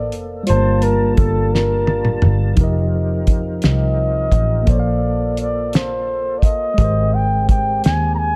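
A slow, straight-feeling six-eight groove at 57 BPM carries this sultry, late-night R&B fragment, tuned to A4 = 445 Hz, with a cloth-damped, thuddy drum kit up front (fat snare, tight kick, rolled-off top) that plays a fill from 1.5 to 2.6 seconds. A foam-muted, round vintage fingered bass anchors the low end beneath a clean tine electric piano heard through its built-in speakers and a mellow tonewheel organ holding sustained chords through chorus vibrato and a slow rotary speaker. Over the Gm9, F9sus4, Bbmaj9 and Abmaj9 changes, a breathy, whispered flugelhorn sings the intimate solo melody with scooped notes, light vibrato and a soft attack.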